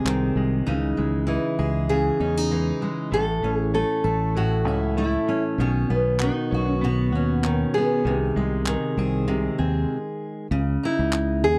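Reflective and wistful, this short acoustic pop excerpt moves at 98 BPM in 4/4 with a light sixteenth-note swing, set in C# minor. A fingerpicked steel-string acoustic guitar with an auditorium-bodied tone sits up front as accompaniment, joined by a round, punchy fingered electric bass and a clean, compressed electric guitar recorded direct that plays arpeggios until 10.5 seconds. From 0.7 seconds a bright nylon-string guitar with fresh strings carries the fingerpicked classical-style melody over chords moving through C#madd9, A and Badd9. A crisp group handclap appears briefly at the start, then returns from 6.2 seconds and carries on through a stop at 9.9 seconds that leads into a new section opening on C#madd9. The sound is dry and close, in the manner of a 1970s studio recording.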